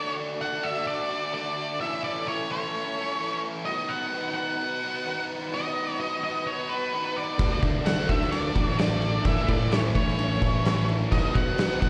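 A straight four-four pulse carries this cathartic, bittersweet quiet-loud alternative rock passage, cut from a longer piece and heard live through a venue's PA with recital hall reverb: a dark, up-front octave-fuzz lead guitar sings the melody over a raw garage guitar riff and shimmering vintage string-machine violins in the background, until at 7.4 seconds two very quiet overdriven electric guitar riffs, one double-tracked, enter together with a growly fingered electric bass and an oversized, low-tuned, punchy drum kit with a fat snare and dark cymbals.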